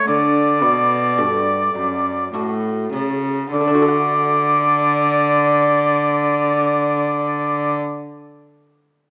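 This is a baroque-style classical sonata movement with continuo, a flowing, dance-like fragment in triple metre cut from a longer piece, with a supple, rubato feel that slows through its first 3.5 seconds. An oboe carries the melody up front as a solo voice, its tone clear and lightly shaded with vibrato and a soft attack. Beneath it, a lute supplies delicate fingerpicked accompaniment on gut and double strings, some doubled at the octave, giving a warm, acoustic glow across its broad register. A single bowed cello anchors the bass line, close and focused, with its own vibrato, sitting up front alongside the oboe. The opening phrase gives way to a second phrase at 3.5 seconds. The players sound as if placed in a recital hall with a generous, wet reverb, heard through a small speaker, with the lute ringing out until 8.1 seconds.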